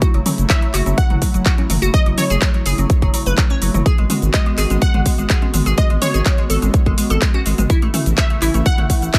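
This progressive house excerpt carries an emotional, bittersweet mood over a straight 4/4 drive, with chords moving from F#m7 to G#m7 and on to A. A punchy, layered electronic kick sits up front beside a deep, thick, saturated sub bass, while a big-room kit adds handclaps, shaker and metallic hi-hats. A glassy, crystalline wavetable pluck spins arpeggios through chorus, phaser and delay, its filter sweeping, and an airy, breathy pad with a slow attack and long release holds sustained chords beneath it. From 0.5 seconds a lush, detuned unison pluck carries the high melody, bright with phaser and delay. Electronic woodblock, toms and congas stay in the background, and the pumping sidechain on the pad, plucks, bass and percussion gives the dry, close mix its breathing pulse.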